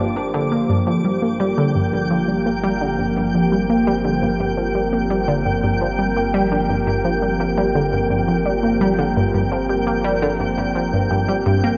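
Ambient, sequencer-driven space music in G minor at 85 BPM, this mysterious, expansive excerpt holds a single Gm7 chord as an up-front, detuned analog pluck with chorus, phaser and tape echo plays a riff over a round sine sub bass, while a sweeping, resonant sawtooth pad with chorus sustains evolving chords and a twinkling granular texture sparkles high above with its own reverb, all set in a lush hall and colored by worn, warbling cassette tape drift.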